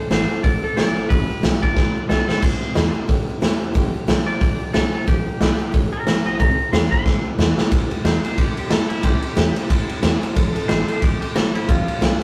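A lightly swung eighth-note feel at 182 BPM in 4/4 drives this rollicking, retro rockabilly excerpt in C major, cut from a longer piece and tuned slightly flat of standard pitch. Up front, a raw garage drum kit of kick, snare, hi-hat, ride and splash cymbal sounds punchy and gritty, its bright stone room set against a dark, rolled-off top, with fills at 1.8 and 7.1 seconds. A twangy electric guitar carries the melody with a clean, compressed, fingered tone, taking a solo through the opening 7.7 seconds before the music moves into a new section. Beneath it, a woody, thumpy upright bass is plucked in the background, while a very quiet dreadnought acoustic guitar adds full-bodied picked accompaniment with audible finger squeak. The chords move among F, G7 and C, and the whole take has the rough feel of a rehearsal room with light reverb and tube saturation.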